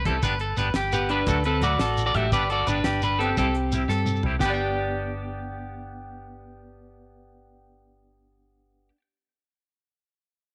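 Bright, echoing clean electric guitar arpeggios and a dark, round hollow-body bass open this sunny highlife guitar band piece in G major at 114 BPM in a straight 12/8, joined by a second clean guitar shimmering with harmonic tremolo, a dry, fat-snared 70s drum kit and a grainy, close shekere, before a slightly broken-up picked lead guitar sits up front with the melody from 0.9 seconds, while the drums play a fill at 3.9 seconds and then drop out with the shekere around 4.5 seconds, leaving the guitars and bass in a small, lightly reverberant room.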